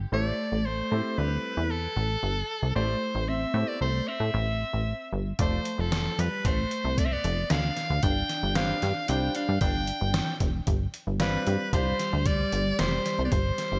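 Bright 1980s-style digital production sets a glossy tone, with a moderate hall reverb giving the parts a lush sense of space in this short cut from a longer progressive instrumental in 5/4 with a straight feel. A plucky analog bass sits up front from the start, punchy and funky, its sawtooth and pulse-wave tones shaped by a fast-attack filter pluck that decays and evolves. Above it, a soprano saxophone carries the solo melody with pop-style vibrato and a present, upfront edge, trailed by digital delay. In the background, a dark, fingered clean electric guitar plays a second line through lush chorus and delay, while a brilliant, open grand piano with long sustain accompanies until 11.9 seconds. At 5.4 seconds a trip hop sampler-style kit enters, compressed, gritty and pitched down, with a thumpy kick, a medium-tuned snare, hi-hat and gated reverb. The harmony moves from Am7 to F6 and then G7sus4, keeping the mood tense and intricate.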